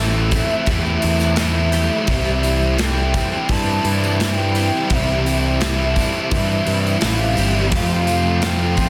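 Dense and heavily limited within a small room, this dreamy, blissful 85 BPM excerpt of shoegaze-leaning dream pop rock drifts from Am7 to C to F, with a velvety, wave-folded synth lead melody carrying chorus and analog delay, a growling overdriven bass up front, two overdriven electric guitar riffs (one set back with analog chorus, the other forward with reverse reverb), a faint shimmering twelve-string acoustic guitar playing arpeggios, a very quiet jingly tambourine entering at 0.2 s, and a punchy gated 80s drum kit of kick, snare and hi-hat in a bright stone room arriving at 0.3 s.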